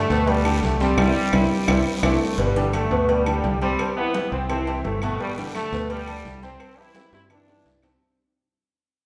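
A bright, punchy trombone section carries the melody up front with light vibrato and a loose, vintage feel, backed by a round, dark fingered electric bass and a clear, intimate baby grand piano whose action noise is audible, in this joyful, sunny salsa cut from a longer piece at 171 BPM in G major. Ringing congas, woody claves, compressed agogo bells and timbales, and very quiet, tight cowbell and bongos fill the percussion, while a raspy, close guiro drops out between 2.1 and 5.2 seconds. A band accent lands with the move from G to Cadd9, and a drum fill leads into a fade-out that begins at 2.4 seconds, all set in a wet recital hall reverb.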